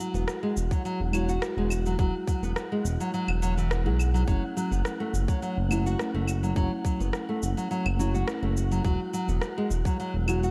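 A dark, lightly reverberant production frames this hypnotic, mystical stretch of organic downtempo in a straight 4/4, cut from a longer piece. Up front, a bright, fingerpicked nylon-string guitar plays classical-toned arpeggios through a digital delay. Muted, felt-like synth keys accompany it, soft and intimate, with chorus, delay and a sidechain pumping. A smooth synth bass with a sustained, up-front tone enters at 0.1 seconds and pumps with the sidechain, while a tight electronic kick arrives at 0.7 seconds with a tape-warm character, re-recorded in a large room. An electronic shaker, rim click and claves share that same room sound, and a breathy, wind-like tuned noise texture sits in the background, airy and mellow with its own built-in reverb. The harmony moves from Eadd9 to F#m7 and settles back on Eadd9 near 8.8 seconds.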